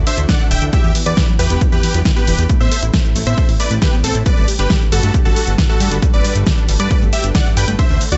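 A very quiet, lush unison pad opens this euphoric uplifting trance passage together with a bright pluck arpeggio in the background and a fat, saturated analog bass, all moving through a Dadd9, Em7, Am and Gmaj7 progression in a straight 4/4. A moment later the main melody arrives on a huge, airy supersaw with vibrato and tape echo, shadowed by a punchy supersaw stab carrying a second line behind it. The drums enter with layered hi-hat, shaker and a massive snare, and a dry, punchy electronic kick sits up front from 0.3 seconds. Sidechain pumping breathes through the bass, pluck and both supersaw parts, while the pad carries chorus and phaser. The mix has little reverb and a top end that stops short of real sparkle, in a short cut from a longer piece.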